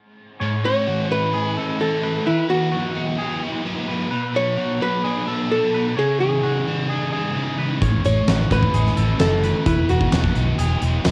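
A hazy, wistful shoegaze and dream pop excerpt at 130 BPM opens at 0.4 seconds with a layered wall of guitars: a bright, twangy clean electric plays arpeggios through subtle chorus and tape echo, while a biting overdriven guitar with reverse reverb and a dark, thick fuzz guitar with analog chorus both drive riffs beneath it. At 0.7 seconds a hollow-body archtop guitar, clean and up front with tape echo, carries the melody over the chord cycle of A, Eadd9, B and C#madd9. At 7.8 seconds a huge arena drum kit enters with a fat snare and punchy kick, joined by a round, foam-muted vintage electric bass that sits low and dark. Several guitars carry a cassette-tape coloring, and light reverb frames a home-recorded sound that feels dreamy and slightly worn.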